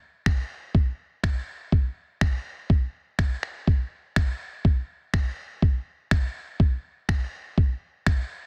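This summery, upbeat pop clip, cut from a longer piece, moves at a straight 123 BPM in 4/4 and consists solely of a lo-fi sampler-style drum kit that plays from 0.3 to 8.2 seconds. Finger snaps and a thumpy kick sit up front with a compressed, muffled character, while soft clipping roughens the snare. The dry sound carries a dense, heavily limited modern master.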